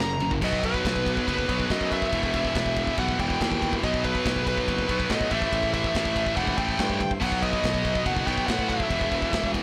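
A straight 4/4 pulse at 142 BPM drives this dark, heavy metal excerpt, with a tight-kicked acoustic drum kit in a small room hitting kick, medium-tuned snare, ride and crash under two bright, picked high-gain guitar riffs, one up front and one in the background, and a growly, punchy fuzz bass. A dark, distorted lead guitar carries the melody on top while a very quiet, majestic full pipe organ sustains brilliant chords beneath, moving through B, Em and Am. The whole band plays from the start to about 9.6 seconds in a blown-out, overdriven recording with light reverb.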